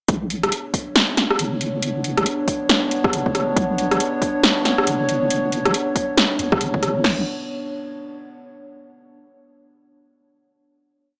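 A dark, cavernous deep dubstep piece in a swung half-time groove, where a nasal, detuned analog pad holds sustained chords over a saturated wobble bass, while two overdriven drum kits, one with a deep kick and crash and the other with metallic hats and a rim click, drive the drop before it gives way to a final chord, all with light reverb and a small-speaker sound.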